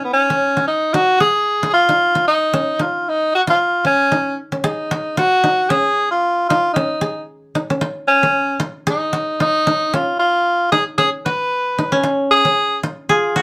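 Intense and funky, this short afrobeat excerpt moves at 114 BPM in 4/4 with a lightly swung sixteenth-note feel. A tenor saxophone with light vibrato carries the solo melody up front, its tone warm yet distant and roomy in a pop style, while a dry, woody acoustic koto played with fingerpicks spins arpeggios, also up front, throughout. Moderate studio reverb frames the pair, and a new section begins at 4.7 seconds as the harmony cycles through chords such as G#5, C#add9 and C#9sus4.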